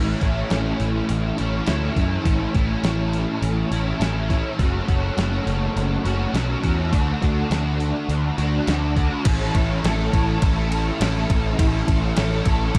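Shoegaze-tinged dream pop rock in A major at 103 BPM, dreamy and wistful, with a biting, double-tracked overdriven guitar riff under ensemble chorus, a round, punchy fuzz bass played with a pick, and a clean 12-bit drum machine with a thumpy kick, medium-tuned snare and hi-hat, ride and crash cymbals entering at 0.2 seconds, all in a dark, dry mix as the chords move from A through F#m7 and D back to A at 9.3 seconds in this cut from a longer piece.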